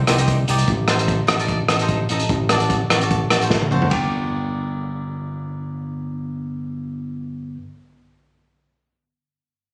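A dark, punchy vintage drum kit drives this tense, intense calypso fragment at 148 BPM in G minor, rolling through a fill at 3.5 seconds before dropping out at 4.0 seconds, while a bright, up-front fingered electric bass and a crisp, picked cavaquinho carry on over moody minor and diminished chords, and a grainy tube shaker sits in the background only until 0.6 seconds, all captured on a phone in a lightly reverberant room.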